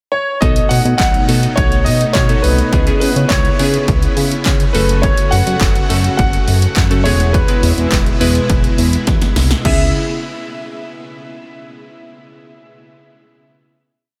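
A light reverb and digital ambience frame this short, complete dance-pop piece in C# minor, moving at 104 BPM in a straight 4/4 with a driving, bittersweet mood. A clear, intimate concert grand piano opens with a pickup at 0.1 seconds and carries a motif-based melody in sentence-like phrases, its action noise audible beneath an analog chorus and a diffuse ambient delay. From 0.4 seconds a punchy analog drum machine, overdriven and placed up front, lays down a four-on-the-floor beat with kick, snare, handclaps, hi-hat and crash, and a drum fill arrives at 9.1 seconds. Beneath it, a glossy, nasal synth bass plays octave lines with slides and chromatic approach notes, while glassy, warbling digital keys add syncopated, closely voiced chords and a string machine of violins holds shimmering pads in the background, all three pumping with sidechain compression. The harmony moves through B7, C#m7, F#m and E before settling on a final C#m7 chord.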